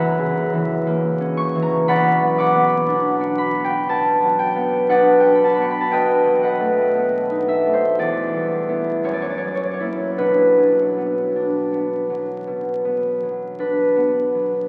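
Mysterious and gentle, this brief classical passage for solo concert harp is cut from a longer piece and unfolds with a free, rubato sense of time in 4/4. The harp sits up front, its fingerpicked strings sounding warm and ringing as they span a range from E2 up to D6. Its harmony drifts from F#7 into Bm, passes through B7 and Em, returns to F#7, and settles back on Bm near 10.2 seconds. A cavernous cathedral reverb with a long tail surrounds the instrument, so each plucked note lingers in the air. The sound carries the crackle and aged patina of a very old 78 rpm record, lending the roughly 14.7-second fragment a faded, antique character.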